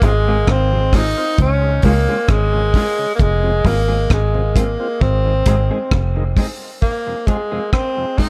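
A straight, unhurried 4/4 dub reggae groove is held down by a dry, dark drum kit of tight kick, hi-hat and rim click, sitting up front beside a round, foam-muted fingered electric bass that drops out at 6.3 s. Over this, a tenor saxophone carries a meditative solo melody in a pop style, its light vibrato sounding distant and roomy and trailed by dub echo. A mellow, clean electric guitar plays fingered accompaniment in the background, compressed and coloured with lush chorus and its own dub echo. Very quietly beneath, a tonewheel organ adds full, lightly overdriven accompaniment with key click and a slow rotary speaker. The echo-heavy mix, touched with light studio reverb, feels spacious, and a new section begins at 6.8 s in this short cut from a longer piece.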